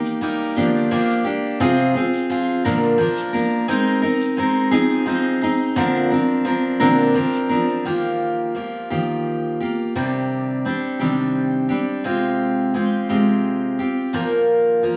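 An acoustic folk piece in 6/8, this short excerpt has a hopeful, pastoral mood. A picked steel-string acoustic guitar carries the accompaniment from start to finish, its fresh strings giving a bright, full-bodied jumbo tone that sits up front. An egg shaker adds a grainy texture in the background, then stops at 7.8 seconds, leaving the guitar alone for the rest. The harmony moves through colourful chords such as Abadd9, Fm7 and Bbadd9 before a second section opens at 7.9 seconds with Ebadd9 and Cmadd9, closing on an unresolved Bbsus4. A moderate studio reverb surrounds the recording, while the shaker carries a small-room ambience.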